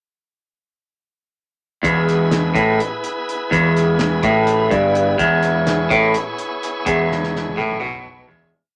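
A brisk 7/8 groove at 251 BPM counted in eighths drives this short, hazy and hypnotic psychedelic rock piece in E major, with every part entering together at 1.8 seconds. An up-front, twangy guitar plays a single-note riff through a phaser, doubled by a round, fuzz-soaked fingered bass in a dotted figure, while a bright, shouting tonewheel organ holds sustained chords through overdrive and a fast rotary speaker. A cloth-damped, muffled drum kit with a fat snare and tight kick sits in a small room, and a drum fill from 7.1 seconds plays out as the piece fades.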